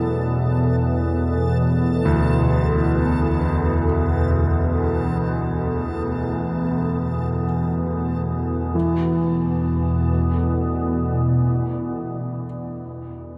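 An organ-like drone sits up front in this cavernous, unsettling dark ambient piece: a calm, sine-toned unison held low, thickened by ensemble chorus and reverb. Above it, a deep, moody pad sustains full-bodied sawtooth chords with detuned voices and a sub octave, its dark colour carried through chorus and reverb. A concert grand piano plays low arpeggios with intimate action noise and long sustain, drifting through a diffuse ambient delay and lingering until 13.4 seconds. High above, a faint reversed, granular texture adds a bright, dreamy shimmer before fading out by about 8.7 seconds, when the harmony moves from D69 to E5. In free time and tuned to A4 = 445 Hz, the whole excerpt is bathed in a huge, wet reverb that stretches every sound into a vast space.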